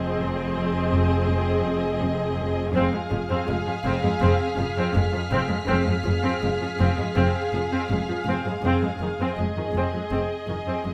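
This uneasy, ominous passage of suspense film score opens at once on a full, muted string body over an F minor harmony, moving at a slow 81 BPM in a straight 4/4. Muted violins carry a narrow melody high in the section while a second violin line holds a single note beneath. Violas with a soft attack fill in the accompaniment, and cellos in the background play a low riff alongside a second cello part and the double basses anchoring the bass. Behind them, a dark French horn section sustains tight chords in classical style until 10.4 seconds. From 2.7 to 8.2 seconds, a faint, lush layer of high violins adds a veiled texture with vibrato. Close, detailed microphones and light reverb keep the sound intimate, and the passage is cut from a longer piece.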